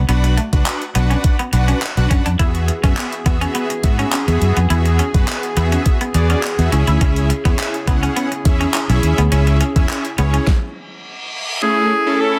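A straight, carefree dance-pop groove in four rides on an overdriven, knocking pop drum kit with handclaps and a round, pumping fingered bass, while a twangy, slightly broken-up electric guitar riff shimmers through lush chorus and a fat, detuned sawtooth polysynth pumps bright sustained chords over Bm, Eadd9 and C#m. From 2.4 seconds a clear, classical-style brass ensemble adds pumping sustained chords in the background. The drums, bass and guitar drop out around 10.5 seconds as an electronic reverse cymbal rises beneath the held synth and brass, and at 11.6 seconds an up-front alto saxophone enters with the melody on an A chord, giving this summery excerpt a dense, heavily limited modern sheen.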